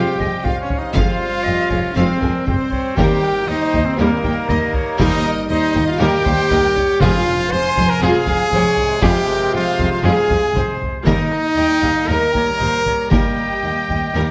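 Taiko drums struck with heavy sticks drive a straight 4/4 pulse at 118 BPM through this dark, relentless cue of epic orchestral film score in F minor, cut from a longer piece. Close and dry, the taiko plays alongside a dark, close-miked French horn section holding sustained chords, while a clear solo trumpet punctuates with stabs up front. The harmony turns between Fmadd9 and Eb, with a warm trombone section adding lightly vibrato-tinged sustained chords in the background. A bowed violin section carries the smooth melody in the background, joined by a second lush violin line reaching up to C6, an airy silver concert flute with a crisp attack, and a focused viola section in accompaniment. Rich cellos and woody double basses anchor the bass, and a very quiet, round timpani note on F2 sounds once at 7.0 seconds, all set in a recital hall reverb with a 1.5-second decay.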